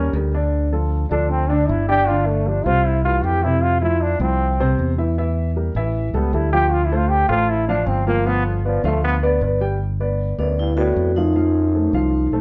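Sunny and danceable, this straight-feel jazz excerpt at 155 BPM opens with a clear, punchy trombone soloing with light vibrato for the first 9.8 seconds over dark, mellow grand piano chords and a round, fingered electric bass, before a metallic, ringing vibraphone with plate reverb takes the melody at 10.4 seconds, the group heard from further back in a moderate studio room.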